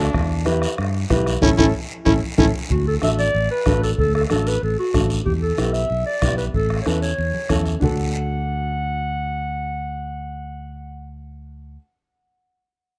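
Cumbia at 188 BPM in D major, danceable and joyful, with a gritty, growling trumpet line that drops out at 2.5 seconds, a dark, woody upright piano and a growly, up-front fingered electric bass running throughout, a distant soft-beater bombo, quiet thick-skinned congas and a raspy guiro driving the groove until 7.9 seconds, and a mellow, vintage-toned clarinet carrying the melody from 1.4 seconds with a slapback echo over a band accent, all in a dry, rough home-demo mix cut from a longer piece.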